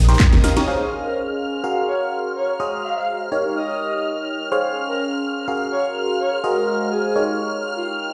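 Joyful and feel-good, this piano house cut from a longer piece moves at 125 BPM in Db major with a light swing. A short drum fill to 0.7 s pairs a cracking, overdriven house kit of handclaps, metallic hats and snare with a very quiet, dry funk kit, while a biting, percussive FM electric piano riff with phaser, delay and a low-pass filter sits up front over shimmering vintage string-machine chords and a warbling, lo-fi tape-like pad, all three pumping to the sidechain. From 1.0 s a breathy, flute-like synth lead carries the melody with tremolo, vibrato and lush chorus over a cycle of Eb7, Dbmaj7, Gbmaj9 and Ab7, set in a large, reverberant room sound.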